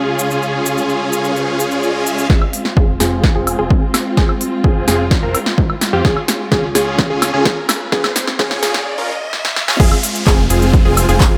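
Festival progressive house in F minor at 128 BPM, cut from a longer piece, where dark, lush symphonic strings sustain chords and a huge, detuned supersaw lead with tape echo and a low-pass filter carries a euphoric riff from the start. A punchy, crisp big-room drum kit with claps, shaker and woodblock enters at 0.2 seconds, and background riser and downlifter effects follow at 0.5 seconds. A bright unison pluck arpeggio, fat analog bass and up-front punchy kick join at 2.3 seconds for a build-up of drum fills and filter sweeps, while the strings, lead, pluck and bass pump under sidechain into an emotional drop at 9.8 seconds.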